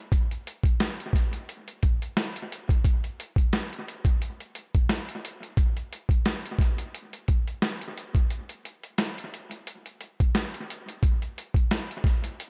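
An echo-heavy mix with light reverb surrounds this short hip hop cut, taken from a longer piece, with a reflective, moody air. A boom bap sampler-style drum kit carries everything, entering at 0.1 seconds at 88 BPM in 4/4 with a 55% swing on the sixteenths that gives the groove a relaxed lean. The kit sits up front and sounds compressed, pitched down and gritty, pairing a thumpy kick with a high-tuned snare and hi-hat, while an analog delay trails behind its hits. A break arrives at 8.3 seconds before the drums carry on to the close at 12.5 seconds.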